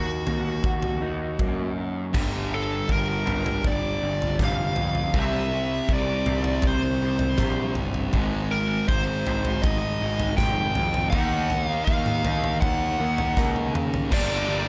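A bluesy, overdriven lead guitar sings up front over a dark, lo-fi electric guitar played in arpeggios with harmonic tremolo, while a growly, punchy fuzz bass holds the low end. This angsty, dark alternative rock moves at a straight 80 BPM in 4/4. A huge, natural arena drum kit with a fat snare and punchy kick joins almost at once. A bright, compressed fuzz guitar riff cuts in at 2.1 seconds as the chords turn from Ebm through Gm, C and Ab. A drum fill at 13.4 seconds leads to a thick fuzz guitar riff in the background at 14.1 seconds, all set in a light, small-room reverb.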